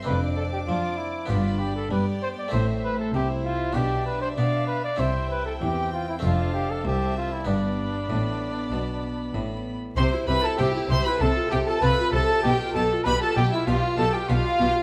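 A festive, brilliant baroque-style concerto movement with solo episodes, cut from a longer piece, moving at 97 BPM in a straight 4/4. A mellow trumpet with light vibrato sits up front, carrying the melody from 0.1 seconds alongside a violin section whose expressive, vibrato-rich line sounds slightly distant, while a second, more focused violin section plays a supporting line beneath. A bright, plucked harpsichord with a single set of strings and an Italian character fills in the accompaniment with an intimate viola section, soft in attack. Below them, a clear cello section sits in the background while a lush, smooth double bass section is placed up front, giving the bass a full, even foundation. The harmony moves through chords such as Am, C and F before the second section arrives at 10.0 seconds, leaning toward G7/B. Light reverb, close and detailed microphones and a layer of vinyl crackle give the recording an old-record patina.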